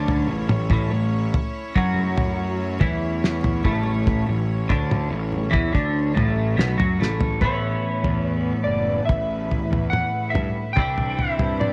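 A light reverb and a faint mains hum surround this trippy, hazy psychedelic rock fragment in A mixolydian at 72 BPM, where a clean, compressed twelve-string electric guitar riff with flanger and double-tracking sits up front beside a punchy, overdriven fuzz bass and a dry, dark, cloth-damped drum kit with a fat snare and tight kick. A rich, floating studio string section holds soft-attacked sustained chords underneath, while distant, ringing congas sit very quiet in the background until 7.4 seconds. After a drum fill at 7.0 seconds, a slightly broken-up slide guitar played with fingerpicks takes the melody at 7.4 seconds with slapback echo, as the harmony moves from A to Aadd9 and then Cadd9.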